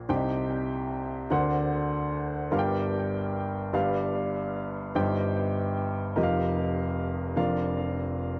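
In a slow, straight 6/8 at 49 BPM, this brief gospel excerpt features a solo upright piano with an intimate, woody, vintage tone, audible action noise and long sustain, placed up front with tape echo and light reverb in a dark, warm mix, moving from Cm through Daug7, Gm, G7 and F9sus4 to Bb/F by 7.4 seconds for a jubilant, hopeful mood.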